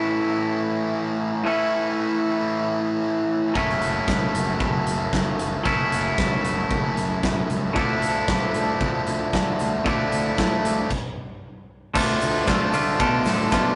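An up-front, overdriven electric guitar riff and a clean, twangy, compressed second guitar open this upbeat yet wistful indie rock excerpt, moving from A to F#m7 and Dmadd9 in a straight 4/4. A growly fingered bass sits in the background, and a punchy big-room acoustic drum kit with bright cymbals arrives at about 3.6 s. After a stop at 10.9 s the music lands on Dm, where a grainy egg shaker slips in very quietly, all within a rough rehearsal-room sound with tube saturation and a dulled top end.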